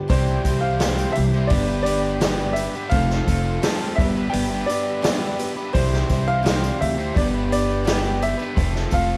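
A boxy, picked acoustic archtop guitar and a dark, overdriven, double-tracked electric guitar riff, both with slapback echo, open this open-road folk rock and heartland rock excerpt at 85 BPM in C major. From 0.1 s they are joined by a brilliant, worn baby grand piano melody with slapback and tape echo, a very quiet tonewheel organ holding sustained chords through a slow rotary speaker with key click, a woody pizzicato upright bass, and a vintage drum kit with a punchy kick, the bass and drums sitting up front. A jingly tambourine follows at 0.3 s, all over a Cadd9, G6 and F progression in a big arena sound with concert hall reverb and vinyl crackle.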